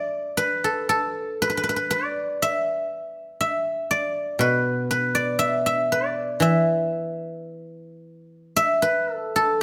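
Closely miked and lightly touched with reverb, this short cut from a longer piece of traditional Chinese solo music features a ringing, silvery guzheng played up front with fingerpicks, unfolding in a contemplative, longing mood with a free, rubato sense of time and a brief change of section at 8.5 seconds.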